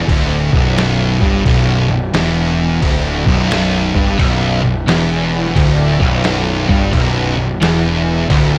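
Stoner and doom metal in B minor at 88 BPM with a swung feel, ominous and sludgy, built on a single Bm chord: one thick fuzz guitar sits up front with a warm, distorted riff while a second, darker fuzz guitar plays a riff in the background, a punchy overdriven fuzz bass picks low underneath, a muffled, pitched-down sampler-style drum kit thumps with kick, medium-tuned snare and crash, and at 4.2 seconds a bright, crunchy double-tracked overdriven guitar joins in the background, all under light reverb in this 8.6-second cut from a longer piece.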